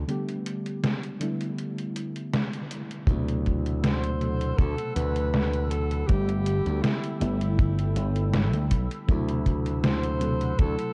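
A cassette-tape sound with a touch of reverb wraps this woozy, faded vaporwave fragment, which opens on detuned, chorused lo-fi synth keys, a bright, punchy slap bass and an overdriven 8-bit drum machine on hi-hat and snare; a dry, tight kick arrives at 3.1 seconds, a mellow tape-like pad at 3.7 seconds, and a clear alto saxophone with light vibrato, sampler grit and tape echo joins to carry the melody.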